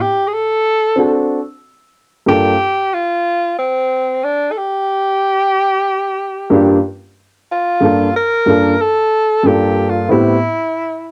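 A loping 92 BPM hip hop groove in 4/4 with a 60% swing on the sixteenths carries this mellow, cool G minor excerpt, tuned to A4 = 438 Hz, where a breathy, subtone-rich tenor saxophone with jazz-style vibrato sings the melody up front throughout, while a dark, woody upright piano adds accompaniment in brief passages from 1.0 s and again from 6.5 s, all wrapped in a home cassette recording with light reverb and a vintage tape character.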